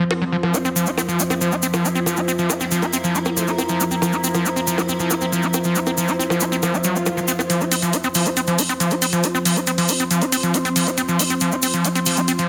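Alien and hypnotic, this psychedelic trance passage, cut from a longer piece, runs in a straight 4/4 pulse. Up front, a screaming acid line in squelchy, resonant sawtooth tones plays a distorted riff with filter sweeps, chorus and tape echo. Beneath it, an evolving wavetable pad holds bright, morphing chords through ensemble chorus, phaser and its own reverb, while a deep, moody ambient pad adds a dark, sub-octave texture. Layered electronic bongos and hi-hat drive the groove with studio reverb, joined by a grainy, saturated tube shaker, and a very quiet, wobbling formant-sweep bass line slips in at 2.6 seconds. An electronic swell sounds in the background at 6.8 seconds, leading into a build-up from 7.5 seconds, all set in a lush hall reverb with a dense, heavily limited modern master.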